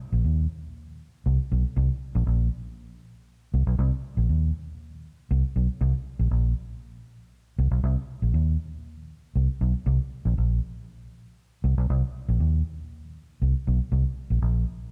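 A vintage muted fingered electric bass plays alone from 0.1 to 14.6 seconds, its foam-muted, round, punchy tone sitting up front with a dark, amped edge. The funk groove moves at 118 BPM in a straight 4/4, the bass staying low between Bb1 and Eb2 for a hypnotic, sly mood. A moderate echo chamber reverb gives the room a lingering tail in this short cut from a longer piece.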